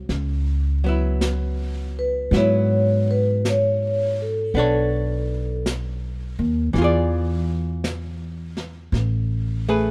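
A slow, swinging jazz ballad with an intimate, wistful mood, cut from a longer piece, where woody, growly pizzicato upright bass and a dark, clean, picked hollow-body archtop guitar sit up front, brushed snare and hi-hat from a smooth, warm, dark kit add soft texture, and a ringing, metallic vibraphone with slow motor vibrato carries the melody from 2.0 to 5.6 seconds over changes moving from C#m7 through Bm9 and E7b9 to Asus2, all in a dry sound.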